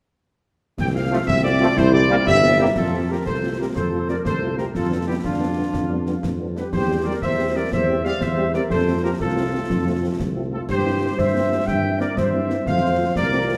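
Heard through a wet concert-hall reverb, this spirited excerpt of a military-style wind band march moves at 121 BPM in a straight 6/8 in F major. A warm, distant trumpet section carries the melody up front over a mellow, soft-attacked tuba bass and close concert snare, dark clash cymbals and bass drum. Meanwhile, a close-miked French horn section accompanies in the background, a bright, tight trombone section holds chords and a euphonium adds a brief second line near the start, and from 2.6 seconds an airy, tongued flute ensemble with lifted highs takes up the second line to the end.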